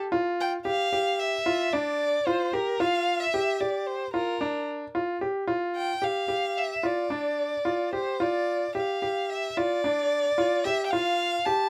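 In a straight 5/4 at 112 BPM, this pensive yet urgent excerpt of contemporary chamber music in G dorian sets a bright, intimate baby grand piano, with audible action noise and long sustain, playing arpeggios from a G5 chord at 0.0 s beneath a single bowed violin that enters at 0.4 s with an expressive, vibrato-rich melody of soft attacks and portamento, both up front in a moderate studio room, before the music moves into a new section at 8.2 s.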